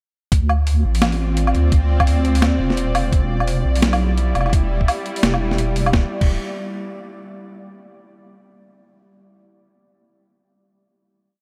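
Tense and dark, this short half-time drum and bass piece at 171 BPM in D dorian drops in at 0.3 seconds with a gritty, pitched-down sampler-style kit: a thumpy, up-front kick, a high-tuned snare, hi-hat, low woodblock and crash, all set in small room ambience over a swung feel. Beneath it a deep, detuned wobble bass, saturated and treated with chorus, shifts its wobble speed through modulated phrases while a string-like drone with slow attack, vibrato, 12-bit grit and sidechain pumping sustains chords moving from Dm7 to Em7. The drop gives way at 5.9 seconds to a final Dm7, and a dreamy, cathedral-like reverb soaks the whole mix.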